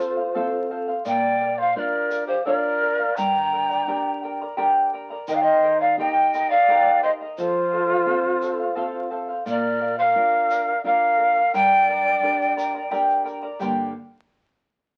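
Crackling like a very old 78 rpm record heard in a moderate studio room, this festive yet wistful Andean folk excerpt in G minor moves in 3/4 at 86 BPM and gradually speeds up, with an airy, hollow pan flute carrying the melody up front and a breathy, bright quena with vibrato and chiff playing a second line, both stopping at 12.9 s, while shimmering fingerpicked charango double strings, a classical nylon-string guitar with audible finger squeak, and a grainy tube shaker in the background continue to 13.9 s.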